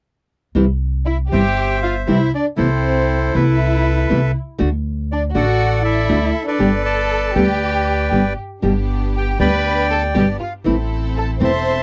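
A dry, close 1970s-style studio sound with light reverb frames this playful, elegant tango excerpt in C major at 119 BPM with a rubato feel, where fingerpicked classical nylon-string guitar enters at 0.5 seconds and a woody pizzicato upright bass joins at 0.6 seconds to set the accompaniment, a reedy, bright bandoneon carries the melody over a rich, bowed chamber violin section's expressive second line, and a clear, lush symphonic string section adds smooth stabs from 8.6 seconds until the close at 11.8 seconds.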